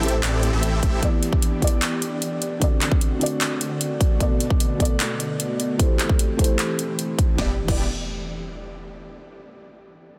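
A felt-muted upright piano with audible action noise underpins this bittersweet, emotional future bass excerpt in E minor at 151 BPM in half-time, its sidechain-pumped, delayed accompaniment moving through Am7, Em7, D7 and Bm7 over an airy, breathy chorused pad in the background, while huge, bright supersaw chords and a thick, dark detuned saw bass sound only at the opening and return at 7.4 s, a punchy electronic kick drives from 0.8 s alongside a big-room dance kit of crash, handclaps, metallic hi-hats and snare, and an electronic impact lands at 7.5 s in a dense, heavily limited mix with light reverb.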